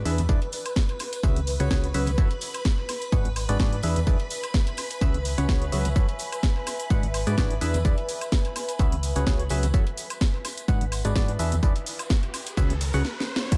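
A punchy electronic kick drives this soulful, bittersweet piano house excerpt at 127 BPM with a light 16th-note swing. It is joined by a tape-warm house kit with a cracking snare and dub echo, a very quiet gritty breakbeat kit, bright close tambourine and congas, a round, dark FM bass, a hollow, wave-folded organ stab riff drenched in chorus, phaser and dub echo, and shimmering vintage string-machine chords. The bass, organ and strings pump against the kick through a cycle of E7, C#7sus4, F#m7 and G#m7b5. A warbling lo-fi pad drifts in at 4.2 seconds, and a riser with a sub drop builds from 11.4 seconds into a stop and drum fill at 13.0 seconds and a band accent at 13.4 seconds.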